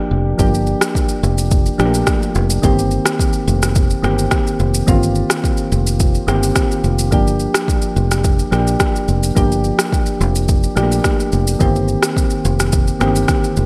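A punchy, foam-muted fingered electric bass sits up front in this sultry, smooth afrobeats excerpt at 107 BPM in G minor, entering at 0.1 seconds beneath soft, round electric-piano-like synth keys whose mellow, fast-attack, decaying tones carry a gentle chorus effect over a Gm7 to Cm7 progression. From 0.4 seconds an electronic afro-pop drum kit adds a deep kick, rim click and shaker, its produced, tape-warm sound re-recorded in a large room. A digital ambience surrounds the whole mix.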